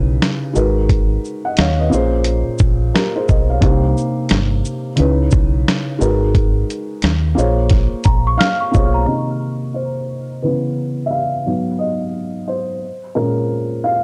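Hazy and melancholic, this lo-fi hip hop cut at 88 BPM in C phrygian swings lazily as a boxy, thick-felted upright piano and a round, dark dub bass ride over a gritty sampler-style kit with a thumpy kick, until a delicate, bell-like celesta with tape echo glints in at 8.0 seconds, and from 9.1 seconds the muted piano takes a solo through a filter sweep, all steeped in dry, cassette-worn hardware grit.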